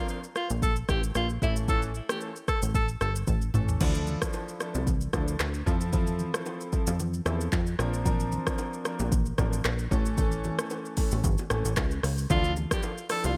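A bright, 1980s-style digital production with light reverb frames this hypnotic, mellow afrobeats excerpt in D minor, moving at 113 BPM in 4/4 with a gentle 16th-note swing. A bright alto saxophone carries the pop-style solo melody up front at the opening, tinged with light vibrato and a digital delay, then drops out before returning at 12.3 seconds. Beneath it, a clear baby grand piano plays open, long-sustaining accompaniment through analog chorus, while a punchy, funky analog bass with a sawtooth and pulse-wave filter pluck sits prominently in the mix with fast, decaying notes. The electronic afro-pop drum kit pairs a deep kick and metallic hats with handclaps, rim clicks, shaker, toms and crash under gated reverb, and a drum fill at 3.3 seconds leads into a section where very quiet, acoustic congas and bongos from a small room join at 3.8 seconds. The harmony cycles through Dmadd9, Fmaj7, Bbadd9 and A, giving the groove a dreamy, circling pull.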